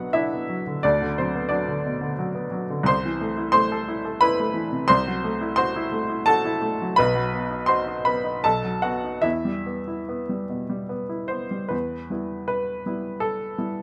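An upright piano opens alone in a clear, woody voice, placed up front with short sustain, carrying a stormy, passionate romantic character piece in E minor. The waltz-time pulse moves with free rubato, drifting between 70 and 91 BPM, and the instrument, tuned to A4 = 439 Hz, ranges from B1 up to C6. The harmony leans darkly from B minor through A minor and a half-diminished chord before gathering on B and B7, then resolving to E minor at 9.2 seconds. A restatement of the opening material begins at 11.7 seconds, and the excerpt breaks off at 13.8 seconds as part of a longer work. Close, detailed microphones and a light reverb keep every note present and intimate.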